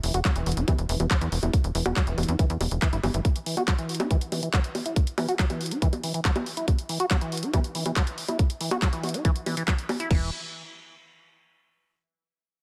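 A straight 4/4 pulse anchors this psychedelic trance excerpt, with a tight, small-room electronic kick up front alongside an overdriven, layered dance kit of bongos, handclaps, hi-hat and crash cymbal. A nasal, punchy sequencer bass of sawtooth and square waves holds the low end until 3.2 seconds and briefly returns at 10.1 seconds. Above it, a squelchy, resonant liquid acid bass riff rides a long filter sweep, coloured by chorus, tape echo and sidechain pumping, all in a digital ambience that feels alien and psychedelic.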